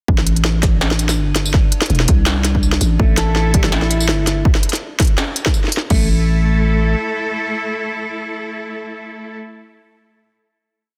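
A dense, heavily limited, dry-sounding master carries this tense, spacious half-time drum and bass piece in A minor at 165 BPM, where a growling, buzzy 808-style bass with long gliding notes sits up front beside a heavy electronic kick and an up-front industrial kit of clanging snare, crisp hats, tambourine and crash, with a very quiet, eerie metallic drone holding a high note under chorus and phaser, until at 3.0 s a clear, bowed symphonic cello section pumping against the sidechain and a dark, clean semi-hollow guitar repeating a tape-echoed arpeggio enter, leading to a final A5 chord at 5.9 s that the cellos sustain to 9.4 s.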